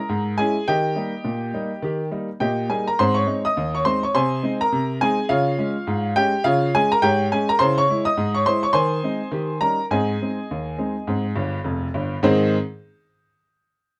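Ragtime piano excerpt in Ab major at 104 BPM in a swung 2/4, where a clear, woody upright piano plays alone from 0.0 to 12.6 seconds, spanning a broad range with long sustain and an up-front, vintage presence under light reverb and close, detailed miking, in a playful, jaunty mood that moves through Dbm, Eb, Ab and Db before an Eb7 turn resolves home and a fill at 11.4 seconds leads into a new section at 12.2 seconds.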